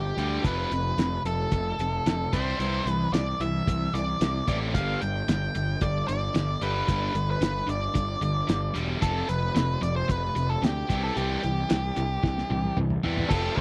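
A fuzz-drenched lead guitar, a riff guitar and a bass open this short classic rock excerpt together. The lead carries a dark, distorted melody up front, with a slapback echo trailing each picked note. Beside it, a biting, double-tracked overdriven guitar drives a riff in the lower register, while a fuzzed, picked electric bass sits prominently beneath, overdriven and amped. A cloth-damped drum kit enters at 0.2 seconds with a fat snare, tight kick, toms, hi-hat and dark, muffled crash cymbals, its thuddy, rolled-off sound giving the groove a lo-fi weight. At a straight 112 BPM in 4/4, the mood is confident and swaggering as the chords move from F through Cadd9 and G to F5 and C. A drum fill from 12.2 to 13.3 seconds closes the passage, all captured in a dry, close 1970s-style studio sound with little reverb.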